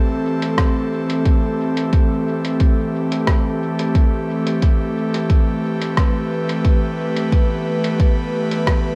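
Ambient dub of a meditative, deep cast, cut from a longer piece, in which an airy, breathy pad with chorus holds a sustained Am7 chord up front from the start, a muffled, lo-fi sampler-style kit of hi-hat and rim click trails dub echo from 0.4 s, and a layered, overdriven electronic kick sits forward from 0.6 s, inside a moderate echo-chamber reverb with a faint mains hum beneath.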